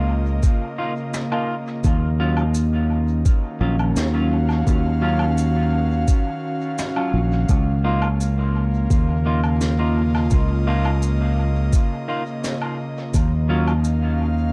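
Dark, lightly reverberant small-room production frames this spacious, deep ambient dub excerpt at 85 BPM in Eb minor, where a muffled, pitched-down electronic kick and a round, punchy fingered electric bass sit up front beneath an airy, breathy chorused pad sustaining Db69 and Ebm9 chords, while clean electric guitar stabs with lush chorus and dub echo enter at 0.8 seconds over distant, brushed shaker, snare and woodblock trailing their own dub echo.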